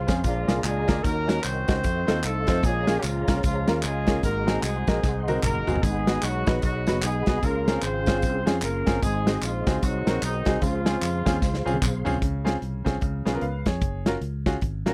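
A dry, close 1970s-style studio sound frames this jubilant, soulful uptempo gospel excerpt in Db major at 150 BPM with a swung feel, where a dark, tightly octave-doubled horn section carries the melody until 11.8 seconds over a clear, worn grand piano, a growly fingered electric bass, a soft flute-like tonewheel organ with slow rotary and chorus vibrato in the background, a punchy, up-front country drum kit with fills at 5.0 and 11.4 seconds, and tambourine, shaker and group handclaps, before piano, bass and drums carry a brief closing section from 12.2 seconds.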